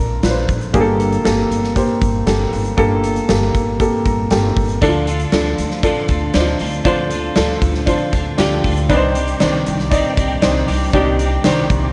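A dark, mellow upright piano opens this hopeful, piano-driven pop excerpt, sitting up front with a natural, short-sustained tone, alongside a pizzicato upright bass with a woody, steel-strung sound. At 0.2 seconds a huge arena drum kit comes in with a punchy kick, a medium-tuned snare and hi-hat, its acoustic hall sound placed close and forward. The piano plays a brief fill at 3.8 seconds, and at 4.8 seconds an electric guitar enters with a picked, compressed riff, slightly broken-up and thickened by an ensemble chorus. The harmony moves from Bb through Gmadd9 and Dm to Cmadd9 in a straight 4/4 feel. The whole recording carries a light reverb and small-room ambience, with a worn, warbling cassette-tape quality, warbly pitch drift and a dulled top end that lend it a warm, faded character.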